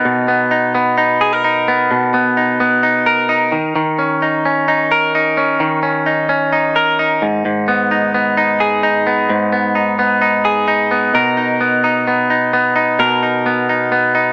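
Indie pop with a nostalgic, youthful mood, this fragment of a longer piece features a lone clean electric guitar, picked and recorded direct, with a bright, twangy, scooped tone that sits compressed and up front. It moves through Bmaj7, D#5 and G#m chords before returning to Bmaj7 as a new section begins at 11.1 seconds. A small, wet room reverb, vinyl crackle and a small-speaker sound give the live-in-one-room recording a worn, homespun character.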